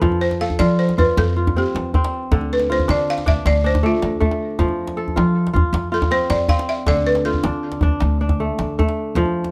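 A buzzing balafon struck with rubber mallets carries the melody up front from 0.2 s to 8.2 s, its dry, woody tone set in plate reverb and tape echo in this joyful, flowing West African piece in 12/8. Beneath it a crisp, ringing kora, fingerpicked with tape echo, spins arpeggios while a thumpy pizzicato upright bass with steel strings and a close, soft-handed djembe hold the groove throughout. The harmony alternates between F and D minor in a moderate studio room, in a short cut from a longer piece.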